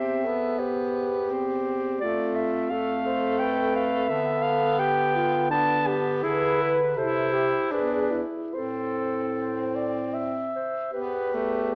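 In a 3/4 at a rubato 71-87 BPM, this melancholic, elegiac classical excerpt in A minor features a single-reed quartet, with a clear, close-miked clarinet singing the melody up front from G4 to A5 while a warm alto saxophone carries a second line beneath it. A clear tenor saxophone with light vibrato and a smooth top supplies accompaniment, also up front, and a mellow bass clarinet anchors the bass from E2 to D3. Moderate stage reverb surrounds the ensemble, yet an AM radio sound narrows the tone as the harmony moves from C/E through G9/D and E7 to settle on Am at 8.5 seconds before turning to Em at 10.9 seconds.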